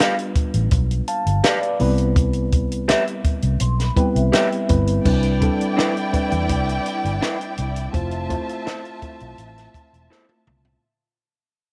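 This short cut from a longer piece of lush 1970s-style soul, in C major at a relaxed, straight 83 BPM, opens on a reedy electric piano shimmering with fast tremolo through its built-in speakers, alongside a slightly broken-up, lo-fi electric guitar riff from a small old amp and a compact cocktail drum kit. The kit sounds dry and natural, with a punchy kick, high-tuned snare and dark cymbals sitting up front, and a foam-muted, round vintage bass joins almost at once, also close in the mix. At 3.6 seconds a mellow vibraphone played with soft mallets rings briefly in the background, its fast motor vibrato adding a metallic glow. From 5.0 seconds a symphonic violin section takes up a second line, bowed with soft attacks, expressive vibrato and a smooth top, as the harmony moves from Cmaj9 to Fmaj7 and the whole passage begins a gradual fade. A drum fill at 10.1 seconds closes the excerpt on a plush, easygoing note under light reverb.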